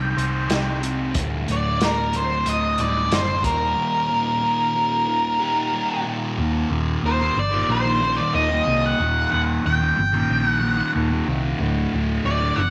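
A moderate echo-chamber reverb with a 2.3-second tail surrounds this short psychedelic rock fragment, cut from a longer piece and set at 92 BPM in a straight 4/4, with a hypnotic, mysterious mood. An up-front octave-fuzz lead guitar carries the melody between Bb4 and G5, its dark, distorted tone trailed by slapback echo. Beneath it, a thick, double-tracked fuzz guitar plays the riff from D2 to C5, its picked, warm grind colored by distortion and a phaser. A hollow-body short-scale electric bass, picked and amped with a round, shadowy tone, holds the low end from D1 to C2. A lo-fi vintage drum kit, recorded in a small room with a muffled, rolled-off top, a punchy kick, a medium-tuned snare and hi-hat, plays only from 0.2 to 3.6 s. The harmony moves from Cm through Dsus4 to Eb, a second passage begins at 6.4 s, and the fragment settles on a D5 near its close.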